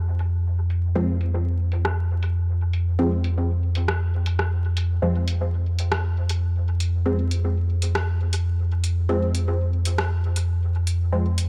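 A round, soft sub bass sits up front from the start, holding on F2 and anchoring this deep, cavernous dub techno excerpt in F minor at 118 BPM. Muted, detuned sawtooth chord stabs with a short filter pluck enter at 1.0 seconds, coloured by phaser and dub echo. Beneath them, a tape-warm deep house kit of hi-hat and rim click runs through low-pass filters, a filter sweep and dub echo, all set in light reverb, digital ambience and a bed of vinyl crackle.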